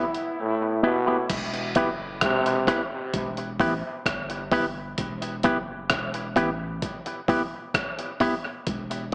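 A growling trombone opens this hypnotic, meditative slice of dub reggae, its raspy, brilliant tone and vibrato carrying the melody alongside an electric guitar whose clean, dark accompaniment is shaped by an envelope filter, both parts trailing dub echo. A breakbeat sampler-style drum kit arrives almost at once, gritty and pitched up, with a thumpy kick, hi-hat, rim click and crash cymbal sounding compressed and up front, as though re-recorded in a large room. At 1.3 seconds a soft, round sub bass slips in low beneath the band with a fast attack and sustained notes. The punchy trombone falls away at 2.7 seconds, while the fingered guitar holds the meditative Em harmony over drums and bass until it stops at 8.3 seconds, and drums and bass carry on to the end of this brief cut from a longer piece. A wet spring reverb and an echo-heavy mix give the whole a small-speaker sound that deepens the trance-like mood.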